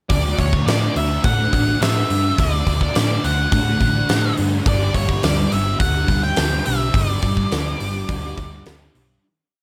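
Wistful and hazy, this short shoegaze and dream-pop rock piece in D major moves at a straight 105 BPM in 4/4, with an octave-fuzz lead guitar spinning a free, dark melody through distortion and digital delay above a thick, double-tracked fuzz guitar strumming chords with whammy-bar dips under ensemble chorus. A round, amped hollow-body short-scale bass drives steady eighth notes while a huge arena drum kit sits up front with a fat snare, punchy kick and hi-hat in a big, natural-sounding room. The harmony shifts from D to G5 at 4.7 seconds, the mix carries little reverb overall, and the whole piece fades out from 6.9 seconds to its close at 9.2 seconds.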